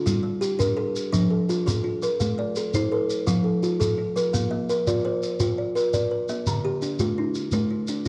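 Two plucked kalimbas open together in this hypnotic, warm southern African traditional fragment, a mbira-style interlocking cycle in 12/8 at 112 BPM in G equiheptatonic: the louder one is woody, dry and close-miked up front with a short thumbnail pluck, and the quieter one has a hollow-box tone and a thumb pluck, both spinning arpeggios over Gm, F, Am, Bb and Dm, while a grainy, mellow shekere joins at 0.1 seconds with a distant, large-room air, the piece carrying light reverb and the character of a home cassette recording.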